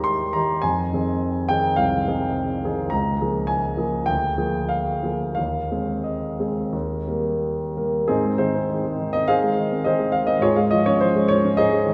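A warm grand piano carries this romantic character piece alone, its natural, up-front tone ranging from C2 to C6 in Ab major with a passionate feel. The tempo drifts between 86 and 109 BPM in 4/4 with free rubato, moving through chords such as Fm7, Bbm7/Db and Bb7/D before settling on Ab at 8.1 seconds, where a new section begins that closes on Db/Ab. A long church reverb surrounds the instrument, giving this short excerpt of a longer work the resonance of a large hall.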